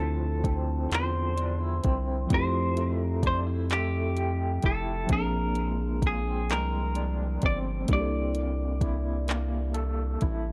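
A bright, clean semi-hollow electric guitar carries the melody from the start, bathed in tremolo and tape echo. Beneath it sit a slightly broken-up, twangy second guitar line from a small old amp (also with tremolo), a worn, slightly out-of-tune tine electric piano, and a rubbery, nasal square-wave bass up front, all moving through Dm9, Fmaj9, Bb9 and C13. A soft, produced R&B kit of kick, hi-hat and handclaps joins at 0.4 seconds, and the dry, dark production gives this slow six-eight R&B fragment a late-night, yearning mood.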